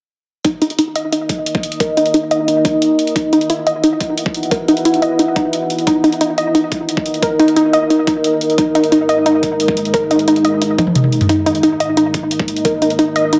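Dark technical drum and bass at 177 BPM in Eb phrygian, this tense excerpt from a longer piece opens at 0.4 seconds with a warbling, lo-fi sawtooth pluck spinning dub-echoed arpeggios under a filter sweep, joined at 1.2 seconds by a deep, moody pad of detuned sawtooth and sub-octave layers holding slow-attack sustained chords, both pumping against the sidechain. From 0.4 seconds, an overdriven, knocking electronic kick sits up front beside a gritty dubstep kit of bright hats and toms, with a drum fill at 10.8 seconds, all set in a moderate plate reverb and a dense, heavily limited master.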